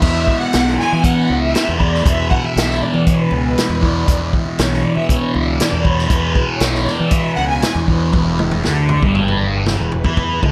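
A lightly reverberant studio sound frames this trippy, hazy psychedelic rock excerpt, cut from a longer piece and moving at 118 BPM in a straight 4/4 in E mixolydian. Up front, a thick, double-tracked fuzz guitar plays a low picked riff through distortion and phaser, while a fingered electric bass adds a round, punchy overdriven fuzz underneath. A vintage acoustic drum kit with a tight kick, medium-tuned snare, hi-hat, toms and crash has a natural room tone and a rolled-off top. A lush bowed string section holds sustained chords with expressive vibrato and a smooth top, carrying a solo until 8.1 seconds, when the music shifts into a new section. Very quiet, low-tuned congas with a bright, thin-skinned, band-limited character sit far back in the mix from 0.4 to 10.0 seconds.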